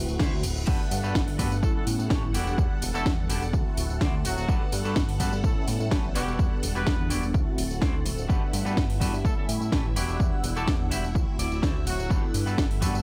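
A dry, punchy mix opens this feel-good, sunny filtered disco house excerpt, where a reverse cymbal leads into an overdriven, up-front electronic kick, while a tape-warm house kit with cracking snare and metallic hats pumps alongside a fat, nasal analog bass, a mellow, round synth brass, a swirling string machine in the background and a twangy clean electric guitar riff that takes a fill at 11.2 seconds, and a clear horn section with light vibrato and vintage sampler grit carries the melody from 1.6 seconds over looping ninth chords.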